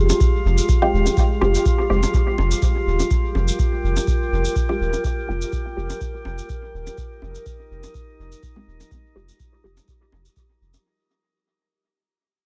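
A deep, tape-warm electronic kick sits up front beside a round, soft sub bass in this hypnotic, hazy dub techno excerpt, with a slight swing and a fade-out across its whole length. A dark analog pad holds sustained Fmadd9 chords with chorus and phaser, while a muted, detuned sawtooth chord stab, entering at 0.8 seconds, moves through a filter sweep, phaser and dub echo. A glassy texture of drifting overtones floats through the mix, with a layered shaker and distant bongos carrying dub echo; the pad, bass, texture, stab and bongos all pump against the kick, and the overall sound is fairly dry.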